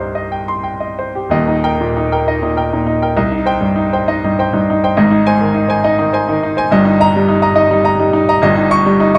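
Bittersweet and stormy, this brief fragment of a romantic classical character piece for solo baby grand piano moves in 6/8 with free rubato, ranging from Eb1 up to Db6. The piano sounds clear, natural and up front, with short sustain, captured by close, detailed microphones within a moderate recital hall reverb. A short opening passage gives way at 1.3 s to a new section that carries the music through to 9.2 s, its harmony moving from Eb through Cm and Ab and ending on Eb7/G.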